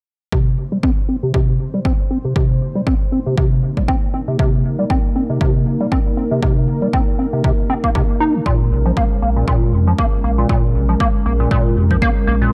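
Acid house at 118 BPM in C phrygian, hypnotic and driving, with a lightly swung 16th feel in this short cut from a longer piece. A squelchy, resonant square-wave acid bass riff with analog chorus and delay carries a filter sweep throughout over a punchy analog kick, while a dark, detuned sawtooth pad holds moody chords under sidechain pumping, moving from Cm7 to Bbm7 at 8.5 seconds. A round sine sub bass enters at 8.7 seconds, and the dry, gritty hardware sound keeps the bass and kick up front.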